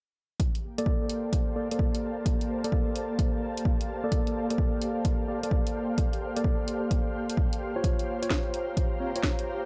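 A punchy analog kick, up front with the ring of a large room, and a layered garage kit of cracking snare and warm hats open this sunny, bouncy two-step UK garage excerpt at 129 BPM in Bb major, swung on the sixteenths. An ethereal, detuned pad with chorus, reverb and sidechain pumping settles in beneath mellow tine electric piano stabs, softened by a low-pass filter and analog delay, holding on Bbmaj7 until a shift to Dbmaj7 at 7.8 seconds. The dry, gritty recording carries a touch of transformer saturation.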